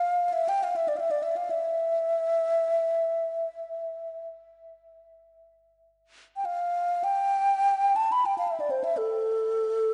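A breathy, mellow wooden-headed alto flute plays alone in free time through this roughly ten-second cut from a longer meditative world piece, its close-miked, up-front tone carrying vibrato and a crisp attack between A4 and B5, trailed by a diffuse ambient delay and wrapped in a wet concert hall reverb within a dark, warm, spacious-feeling production.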